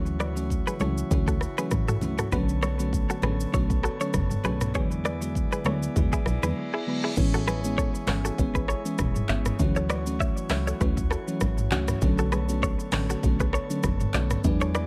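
A faint mains hum sits under this sunny, breezy afrobeats excerpt, where a punchy, plucky analog bass and an up-front electronic drum kit with a deep kick, metallic hats, handclaps, shaker and toms drive a lush, dreamy, chorused FM electric piano with a soft pad layer, light pipe-organ flute chords, a twangy clean electric guitar riff through tape echo and very quiet damped congas, with a reverse cymbal entering at 6.4 seconds and sounding through a short break from 6.6 seconds.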